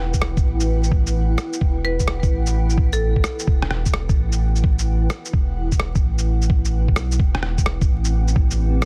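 Swung sixteenths at 129 BPM in 4/4 drive this short future garage clip in E minor, a rainy, wistful passage cut from a longer piece. A muffled, thumpy kick and a pitched-down shaker and rim click carry a sampler-style, compressed feel with studio reverb, the rim clicks softly clipped and tape-tinged. Underneath, a round sine sub bass sits up front with tube saturation and sidechain pumping, while a granular cloud pad holds blurred, detuned chords with built-in reverb and a moving notch, breathing with its own sidechain pumping. Between 1.8 and 3.2 seconds a dry, close-miked marimba struck with hard mallets adds a brief, woody, bright figure trailed by analog delay. The harmony rests on Em before shifting to C6/E at 7.2 seconds, and the dense, heavily limited master carries a layer of vinyl crackle.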